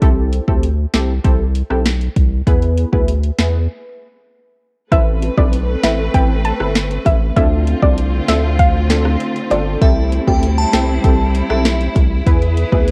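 Dancehall with a tough, hypnotic pull, cut from a longer piece and carrying the character of a cassette home recording in a lightly reverberant room. It is built on an up-front electronic drum kit with a deep kick, sharp snare and metallic hats, a thick saturated sub bass, and a punchy, nasal chord stab with detuned sawtooth bite. After a break from 3.7 to 4.9 seconds, a soft, round pluck carries the melody while a clear, lush studio string section sustains chords with a sidechain pump, and very quiet, high-tuned bongos join at 5.2 seconds. Near the end, at 9.8 seconds, a glassy, crystalline FM bell adds a second line through analog delay. Throughout, the chords move from C6 and E to Amadd9 and Dm7 before returning to C6 and E.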